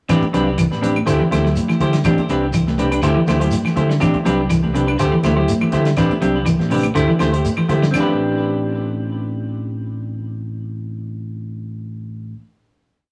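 Afrobeat at 122 BPM in A dorian, hypnotic and driving, built on a vamp that alternates Am11 and D9sus4 before settling on a final Am11 at 7.9 seconds. A punchy, up-front fingered electric bass plays a syncopated riff under two clean semi-hollow electric guitars: one picks a dark, low ostinato of arpeggios, while the other strums upper chord shapes through tape echo and rings on until 12.4 seconds. Behind them sit a cloth-damped, thuddy drum kit with a fat snare and rolled-off top, very quiet high-tuned congas, woody claves on a five-stroke time line and a grainy shekere, all captured in a rough rehearsal-room recording with saturation and moderate reverb.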